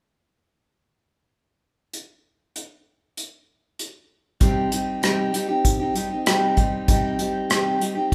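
Wistful and reflective, this folk rock and heartland rock passage, cut from a longer piece, moves at 97 BPM in a straight 4/4 in C minor. An unplugged drum kit opens at 1.9 s with hi-hat, a punchy kick and rim clicks played with bundle sticks, its sound airy and polished. At 4.4 s a picked steel-string acoustic guitar enters on a C minor chord, up front and warm with audible finger squeak. The band plays live together in one room under a moderate large studio reverb.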